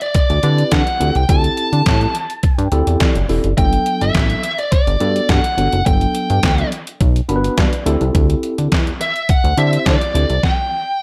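Early-eighties boogie funk at 105 BPM in G major, this feel-good, danceable excerpt moves on a straight 4/4 groove through a single section, cut from a longer piece. A detuned 8-bit digital drum machine sits up front with a thumpy kick, medium-tuned snare, hi-hat and handclaps, its sampler-style hits carrying gated reverb and a tape-warm character from being re-recorded in a small room. The chorused synth bass, also up front, blends pulse-wave, sawtooth and sine tones with pulse-width modulation and a fast-attack filter pluck, sounding retro and glossy yet mellow as it ranges from E1 to D3. A clean tine electric piano heard through built-in speakers supplies accompaniment and steps out with fills at 2.4 and 7.0 seconds, while the harmony shifts from D7sus4 to Gmaj7 at 3.6 seconds and back. Over the top, a bluesy, dark, distorted lead guitar plays picked melody lines between D5 and A5. At 10.4 seconds the bass and keys stop, and the drums follow at 10.6 seconds, so the guitar rings on alone to the end, all within light digital ambience.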